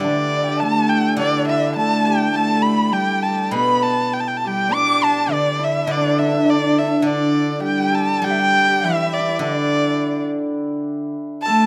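Chinese traditional chamber music in the D zhi mode, graceful and pastoral, moves at a rubato 103 BPM in 2/4: a warm, up-front bowed erhu carries the melody with expressive vibrato and portamento, a bright, shimmering hammered dulcimer, a very quiet, airy bamboo dizi with its buzzing membrane, and a soft-attacked sul tasto cello add second lines, and a silvery steel-string zither plucked with fingerpicks rings underneath, all captured by close, detailed microphones with light reverb as the passage shifts into a new section at 8.2 seconds.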